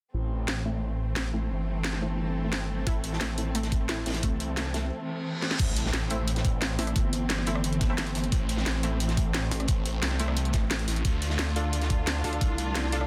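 A dense, heavily limited mix with light digital ambience opens this tense, dark technical drum and bass excerpt at 176 BPM in A minor, where a distant bowed string section holds sustained chords and a swirling, thick phased saw bass pumps up front under a faint, cloudy granular pad. An up-front electronic kit with cracking snare and bright hats, bold orchestra-hit-like stabs with reverb and delay, and from 2.9 s a knocking kick, a gritty, rolled-off breakbeat kit in the background and a round, chorused analog pluck arpeggio all add to the tension. A quiet reverse cymbal leads into the drop at 5.6 s, where a heavy, pulsing wobble bass joins from 6.8 s as the chords move from Am to Dm.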